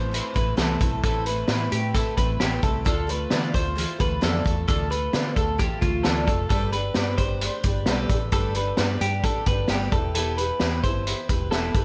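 Jangly indie pop with a restless, bittersweet mood, this short cut from a longer piece moves through Amadd9, Dmadd9, Gadd9 and Em over a straight 4/4 pulse. A shimmering, octave-doubled twelve-string acoustic guitar picks out the accompaniment while a twangy, compressed electric twelve-string plays high arpeggios through tape echo, and a dark, foam-muted fingered bass holds the low end. The vintage drum kit enters at 0.1 seconds with a high-tuned snare, punchy kick and hi-hat, sitting up front with a rolled-off top, all in a light reverb.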